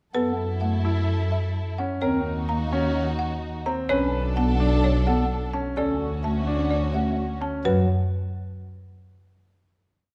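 Urgent and hypnotic, this short classical piece in a minimalist pattern style moves in a straight four-beat pulse through a cycle of four seventh chords before settling on a final chord at 7.6 seconds. A folk marimba struck with medium hard mallets carries the melody in a repeated short cell, its hardwood bars sounding woody, dry and rustic. A bright concert grand piano spins arpeggios in its own repeated cell, brilliant and polished with long sustain and audible action noise. Beneath them, a pipe organ on stopped flute stops adds a soft, hollow accompaniment with a touch of chiff, while a violin section holds lush, swelling chords with smooth vibrato until 7.4 seconds. Most forward in the mix, a single bowed double bass sustains long, rich bass notes with a soft attack, vibrato and expressive portamento. A moderate scoring stage reverb wraps the ensemble in a dark production.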